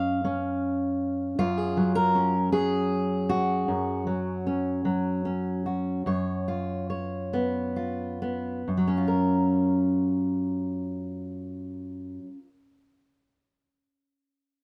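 Folk piece for solo fingerstyle acoustic guitar, gentle and peaceful, in 3/4 at a relaxed 64-79 BPM in F# major. A single fingerpicked steel-string acoustic guitar carries the whole piece, its dark, auditorium-sized body tone placed up front and ranging from F#2 up to E#5. Harmony moves from C#/F# to F#5, then to C#7/F# at 6.1 seconds and settles on F#maj7 at 8.7 seconds. The tempo slows between 3.7 and 8.7 seconds, easing into the closing chord. A moderate studio reverb gives the guitar a modest sense of room, and the clip is cut from a longer piece.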